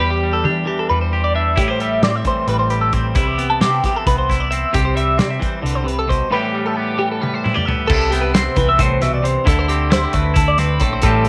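Set in a straight 7/8 at 266 BPM counted in eighths, this wistful, intricate math rock and midwest emo excerpt opens with a twangy electric guitar carrying a warbly pitch drift, a bright, compressed twelve-string electric guitar spinning phaser-tinged arpeggios, and a round, dark hollow-body short-scale bass. A loose indie drum kit joins at 1.6 s, sounding like a small room with a punchy kick, a medium-tuned snare and a rolled-off top. A drum fill at 7.2 s leads into a new section at 7.9 s, as the harmony moves from Em7 and Am7 through Cmaj7 and Am9 to a closing D9sus4 under light reverb.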